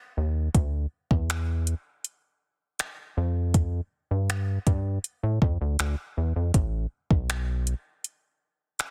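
A straight 4/4 groove at 80 BPM, carried by a smooth, electronic R&B drum kit of finger snaps, metallic hi-hats and a soft kick with a tape-warm sheen, sets a late-night, longing mood for this contemporary R&B fragment cut from a longer piece. A rubbery, hollow square-wave bass opens the fragment at 0.2 s, just ahead of the kit's entry at 0.5 s, its nasal, filter-plucked tone resonant and bouncy, sitting up front with the drums in the low register before it stops at 7.7 s while the kit carries on to 8.9 s. The sound is dry and close, with a dense, heavily limited modern master.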